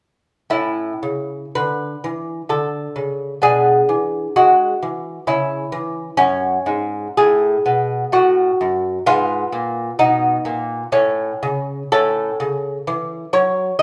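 A solo lute enters at 0.5 s, fingerpicked and delicate, playing a flowing, serene baroque-style dance in A major. The tempo sits around 63 BPM in 3/4, but the beats are uneven and the rubato lets the phrases breathe freely. Its nylon double strings, some doubled at the octave, give a warm, acoustic tone that sits up front. The harmony moves from A through G#dim/B, C#m and F#m, touches Fdim/Ab, then returns to A and settles on F#m/A before the music is cut off at 13.8 s. A moderate studio reverb adds a gentle sense of space around the lute, heard as a live performance in a large room.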